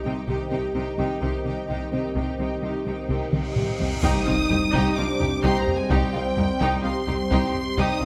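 Taiko drums struck with hard sticks sit close and dry beneath a swirling, evolving analog pad treated with phaser and chorus, driving this tense, futuristic excerpt of a hybrid orchestral and electronic film cue in C minor at 128 BPM. Lush bowed strings carry the music, with violins holding a focused melody high above a second violin line, an intense viola part, and cellos and double basses anchoring the bass, while a soft, round pluck arpeggiates and a felt-muted upright piano adds mellow texture with audible action noise. A huge, bright cymbal swell and drum fill at 3.3 seconds build to an impact at 4.0 seconds, where French horns and a very quiet trombone section join with sustained chords in the moderate reverb of a scoring stage.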